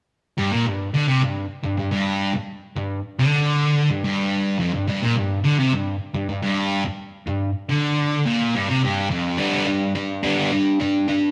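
A sludgy, overdriven electric guitar plays alone from 0.4 to 11.3 seconds in this swaggering, driving rock clip cut from a longer piece. Picked, double-tracked and up front, it sits on a G5 power chord before moving to a full G chord at 9.4 seconds, in a straight 4/4 at 107 BPM, tuned to A4 = 439 Hz. The rough rehearsal-room recording places it in a wet stone room with a lingering reverb tail.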